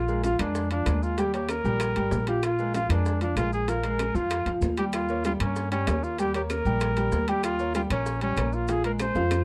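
A brisk 192 BPM in straight 4/4 drives this short Afro-Cuban jazz excerpt, cut from a longer piece, with a sophisticated, sunny mood. Tight, high-tuned bongos played with hard hands sit in the background, ringing metal-shell timbales sound close and dry, and very quiet woody claves and grainy maracas fill in the percussion, with a drum fill arriving at 9.2 seconds. Up front, a pizzicato upright bass with steel strings gives a dark, woody low end, moving between Ab1 and G2. A mellow solo trumpet carries the melody from Db4 to C5 with light vibrato, scooped notes and a smooth top, while a brilliant upright piano with audible action noise adds intimate accompaniment. The harmony moves through Bb7, Eb9 and Bb7sus2, and the dark production is touched with light reverb.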